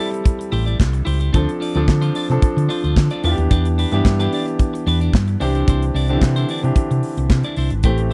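Danceable and glamorous, this excerpt from a longer disco piece moves at 111 BPM in a straight 4/4 over Am7, Dm7, Em7 and Cadd9, with a brilliant, up-front concert grand piano and a clean, compressed, picked electric guitar sharing accompaniment from the start, an airy, polished studio drum kit of tight kick, medium-tuned snare, hi-hat and handclaps arriving at 0.1 seconds, and a dark, round, punchy hollow-body bass joining at 0.5 seconds, all captured in a dry, close 1970s-style small room.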